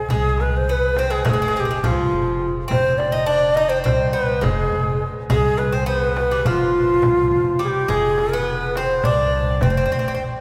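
A breathy, reedy ney opens at once alongside a metallic, picked bouzouki, setting a melancholic, longing mood in this short cut from a longer Turkish makam ensemble piece in F makam nikriz. The music moves in 9/8 at 208 BPM counted in eighths, with the ney carrying the melody up front, its tongued notes shaded with vibrato, while the bouzouki's double strings, some doubled at the octave, trace a second line beneath it. A woody, dark upright bass plucks the low end. A crisp, metal-shelled darbuka played with hard hands and a small frame drum struck with soft hands sit very quietly in the background. The whole ensemble is bathed in a long church reverb, giving the recording the spacious ring of a church or concert hall, and the frame drum drops out at 9.8 seconds as the passage closes around 10.4 seconds.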